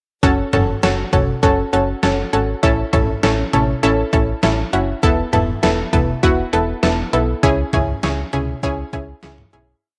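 This brief synth-pop piece carries the hazy character of a home cassette recording, set in a moderate spring reverb. It moves at a cool, driving 100 BPM in 4/4 with a straight feel in F# minor, and it is tuned slightly sharp to A4 = 441 Hz. From 0.2 seconds, a bright, detuned sawtooth pluck sits up front, playing close-voiced chords in an eighth-note rhythm with a round filter snap, chorus and a tape-worn sheen. Beneath it, a snappy FM bass with a metallic attack pulses in low eighth notes. An electronic, sampler-style drum machine drives the beat with a thumpy kick, hi-hat, a gated-reverb snare and syncopated toms, overdriven and re-recorded in a small room onto cassette. The single verse moves through F#m, A, Esus4 and C#m, and a fade-out begins at 7.4 seconds and runs to the close at 9.8 seconds.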